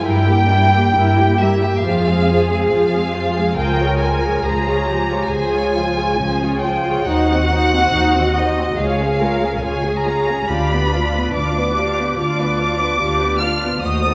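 Melancholic and elegiac, this slow romantic movement for string orchestra moves at about 70 BPM in 4/4 with a flexible, rubato pulse, heard as a 14.1-second fragment of a longer piece. Muted violins carry a veiled melody up front, a more distant second violin section and close violas fill in the inner lines, and cellos join an up-front double bass section on the bass, every part bowed con sordino with vibrato that is lighter in the basses. The dark string tone sits in a wet recital hall reverb, with diminished chords shading harmonies such as Fm, Dbmaj7 and Db.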